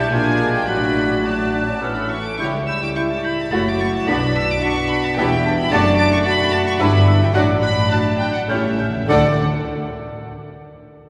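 A cheerful, lively classical-period orchestral movement in triple time with a rubato feel, cut from a longer piece, where bowed chamber violins carry the melody with light vibrato and a soft, intimate sul tasto tone while a second violin line, an airy silver flute and a clear, distant clarinet weave second lines around it. Dark, woody violas, a warm solo bassoon and very quiet, roomy French horns holding sustained chords fill out the middle, with close, soft-attacked cellos and dark double basses anchoring the bass. Articulate timpani struck with hard mallets enter only at 8.5 seconds for a brief fill, and the whole ensemble sits in the wet reverb of a church.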